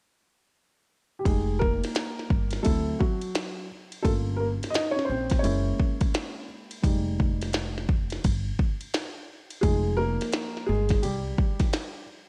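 A dark baby grand piano leads this cool, smoky jazz-hop cut, entering at 1.2 seconds and soloing from 1.3 seconds to the end at 12.3 seconds. Its mellow, boxy tone has short sustain and audible action noise, and it sits up front in an intimate way. At 86 BPM in F minor, with a swung 16th-note feel, the harmony moves through Fm9, D7, Gm7b5 and Gb9 before returning to Fm9. An acoustic upright bass, played pizzicato on steel strings, adds a woody low end until 11.3 seconds. A minimal, produced electronic drum kit sits up front with a deep kick, a tiny snare, clicky hi-hats and a ride cymbal, re-recorded in a large room. A digital ambience surrounds this short section cut from a longer piece.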